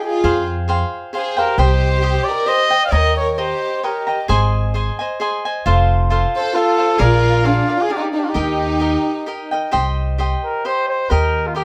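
Passionate and dramatic, this mariachi folk piece in Eb major moves in a swinging 3/4 at 133 BPM, with a mellow, distant trumpet carrying the melody in a classical style, touched with light vibrato and plate reverb, and pausing between 4.2 and 6.4 seconds. A dark violin section bowed sul tasto adds a soft-attacked, intimate second line alongside it until 9.5 seconds, while a crisp, picked cavaquinho accompanies throughout and a woody pizzicato upright bass anchors the low end. Chords such as Fmadd9, Cm, Eb7 and Bb7 sit in a small room with moderate ambience, and the excerpt shifts into a brief new section at 9.7 seconds before ending on Eb.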